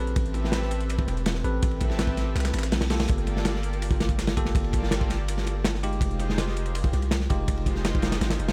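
Drum and bass with a jungle lean, this short atmospheric excerpt carries a nostalgic glow over a straight 4/4 groove. Up front, a crunchy breakbeat kit hits with a punchy kick, a medium-tuned snare and dark ride cymbals, its saturated, gritty tone rolled off at the top and thrown into analog delay. Behind it, a dusty soul sampler-style kit adds compressed hi-hat and snare, both high-pass filtered and echoed. A deep, sine-like 808-style bass holds long decaying notes at the front of the mix, while a lush, warbling unison pad of detuned sawtooth voices swells in slowly with chorus under chords moving from Am9 at 0.2 seconds to Gm9 and then Fm9. Bell-like, clean electric piano stabs ring through analog delay, a very quiet reverse cymbal flickers in at 2.7 seconds, and the whole echo-heavy mix sits in a small room ambience.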